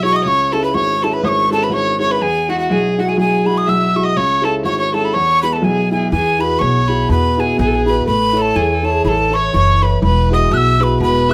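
A breathy metal whistle carries the melody up front in this cheerful, lively Celtic polka in a swung 2/4, its tongued notes showing chiff and expressive vibrato. A single bowed fiddle with a rich, reedy gut-string tone plays a second line, while a dark, mellow grand piano accompanies with a boxy, intimate sound, long sustain and audible action noise. A woody pizzicato upright bass joins at 6.1 seconds as the music moves into its second section, all set in a moderate studio reverb in this short cut from a longer piece.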